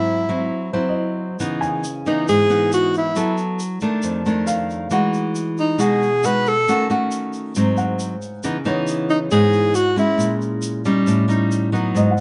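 A breathy, whispered alto saxophone with subtone and vibrato carries the melody up front and close in this smooth, melancholic bossa nova fragment, over fingerpicked classical nylon-string guitar, a present baby grand piano that drops out between 4.9 and 7.8 seconds, and a grainy tube shaker entering at 1.4 seconds, with plate reverb on the saxophone and the whole recording set in a small, moderately reverberant room.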